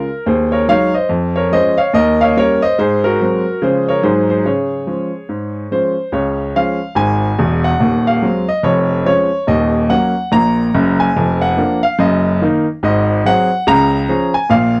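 This is a dry, close recording in the manner of a 1970s studio, with a modest booth ambience that keeps the piano up front. It is a short excerpt of exuberant, swinging stride jazz in Db major, moving at 143 BPM in 4/4 with a 62% swing on the eighth notes. A solo upright piano with a woody, vintage tone and long sustain carries the whole passage, reaching from a deep Eb1 in the bass up to Bb5. The opening phrase runs to about 6.1 seconds, circling through dominant harmonies such as Ab7 and Eb7 before settling on Db. A second section follows until 14.8 seconds, darkening briefly with Ebm7 and Ebm/Gb before Ab7 leads back home to Db.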